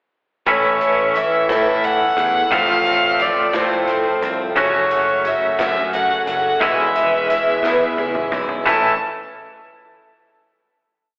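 A dark, woody fiddle carries a hopeful, nostalgic song-phrase melody up front from 0.5 seconds, over a shimmering, octave-doubled twelve-string acoustic strummed in sixteenths, a twangy electric guitar ringing chords through tremolo, a bright, growly picked bass on a dotted figure and a vintage drum kit set back in a 6/8 groove, moving through A, F/A, F#m and E6 at a slow 59 BPM with a drum fill at 7.6 seconds before settling on a final A chord, all heard as a folk and heartland rock piece from a live gig through the venue's PA with recital-hall reverb and a telephone-like tone.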